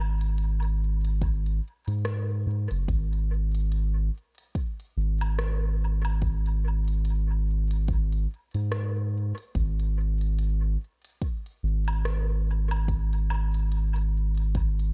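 Ambient dub at 72 BPM in 4/4, with a light swing on the sixteenths, this short passage cut from a longer piece feels meditative and hazy. A soft, round sub bass carries the low end from the start, sitting up front with a fast attack and sustained notes between F#1 and G#2, its tone blending triangle and square-wave qualities. An electronic drum kit of hi-hat, rim click and woodblock enters at 0.2 seconds, lower in the mix, with crisp hats and a dub echo, re-recorded in a large room. A deep, layered electronic kick joins at 1.2 seconds, placed up front with a tape-warm, produced character. The overall sound is dry, with little reverb, and the whole span stays in a single section tuned to A4 = 439 Hz.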